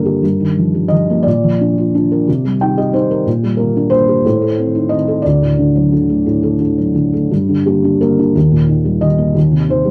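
A dark, intimate sound opens this short cut from a longer piece: a felt-muted upright piano sits up front in light reverb, its thick felt softening every note and the action noise clearly audible. This is lyrical classical solo piano in G minor, melancholic and wistful, moving at 60 BPM in dotted quarters in 6/8 with a free, rubato feel. The tuning rests a little low, at A4 = 437 Hz, and the piano spans D2 to G5 across the 9.9 seconds. The harmony drifts from Ebadd9/G through Bb and Cm7 toward Adim and D, settling on Gm at 7.3 seconds before passing to Eb and Cm/Eb. A brief felt-piano fill from 2.3 to 3.3 seconds adds a moment of ornament over the Cm7.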